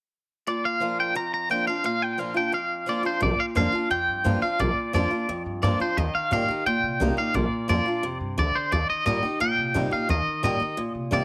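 A studio reverb gives this rowdy, rollicking rockabilly cut from a longer piece a roomy sheen. It moves at 174 BPM in a straight 4/4 feel in Bb major, tuned to A4 = 436 Hz. From 0.5 seconds, a clean, scooped, twangy electric guitar carries the melody up front, colored by tremolo and tape echo. Beside it, a bright, picked acoustic archtop guitar plays the accompaniment, also up front. At 3.2 seconds the second section opens as a woody, thumpy upright bass with gut strings joins in pizzicato, all three parts playing through to 11.2 seconds. The harmony moves between Bb and Eb.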